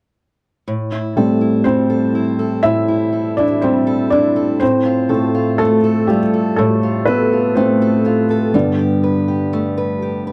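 In a dry, close 1970s-style studio sound with light reverb, this melancholic, heartbroken pop fragment opens with fingerpicked steel-string acoustic guitar arpeggios at 0.7 seconds, joined at 1.2 seconds by an up-front, felt-muted upright piano whose mellow, intimate tone and audible action noise carry the lead over Am7, F/A and Gadd9 chords.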